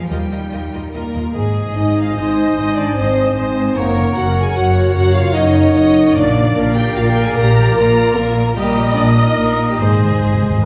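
A heroic, soaring passage of cinematic adventure score in a brisk 3/4 at 149 BPM opens with ringing harp arpeggios over a warm, expressive cello section and a rich double bass section. Above them, a bright, focused violin section carries the melody alongside a second violin line, lush violas and sustained French horn chords. From about 1.3 seconds the oboe, flute and clarinet join with second lines (the oboe present with light vibrato, the flute pure with a crisp attack, the clarinet mellow and distant) as the chords move through Ab, Gb and Bb. Soft-mallet timpani add a round fill at 9.8 seconds, and a wet scoring-stage reverb places the orchestra further back in the room.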